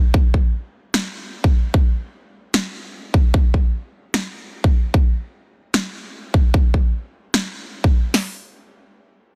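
Bittersweet and dreamy, this future bass excerpt at 150 BPM moves in a half-time 4/4 feel, driven by an up-front, layered big-room dance drum kit of punchy kick, snare and metallic hi-hats from 0.1 to 8.2 seconds, joined at 0.9 seconds by a softer produced layer of electronic finger snaps and snare drum, all kept dry and pressed into a dense, heavily limited modern master.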